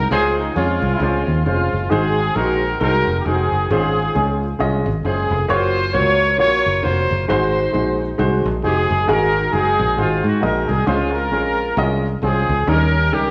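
Uptempo gospel with a soulful, hopeful swing, where a breathy, whispered trumpet and a dark, tight horn section carry the melody through tape echo, while a punchy, foam-muted fingered electric bass and a mellow baby grand piano with audible action noise fill out the groove in a moderate recital-hall reverb.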